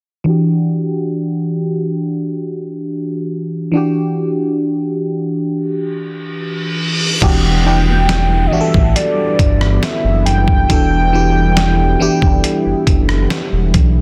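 A glassy, bell-like FM electric piano opens this moody, sensual contemporary R&B excerpt at 69 BPM in E minor, resting on an Em9 chord with chorus and phaser while a filter sweep shapes it through the first 7.2 seconds, and a reverse cymbal and downlifter come in at 6.2 seconds. At 7.2 seconds the groove lands: a dusty, gritty sampler-style kit with a thumpy kick, rim click, hi-hat and crash sits up front beside a round, deep analog bass, and a shimmering retro pulse-width pad hangs in the background. From 7.7 seconds a velvety, full-bodied synth lead with vibrato carries the high melody. The sound is dry, dense and heavily limited.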